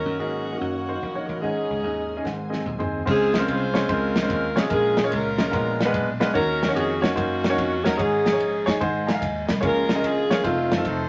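Reverent and hopeful, this uptempo swung gospel excerpt in Db major at 146 BPM sets an up-front, tight saxophone section melody over intimate baby grand piano with audible action noise, punchy foam-muted thumbed slap bass, a very quiet tonewheel organ with key click and slow rotary, and lush, woody bowed strings in the background that drop out at 3.1 seconds, as a dark, smooth drum kit enters with a fill at 2.3 seconds, the piano adds a fill at 8.8 seconds, and vinyl crackle and moderate reverb colour the sound.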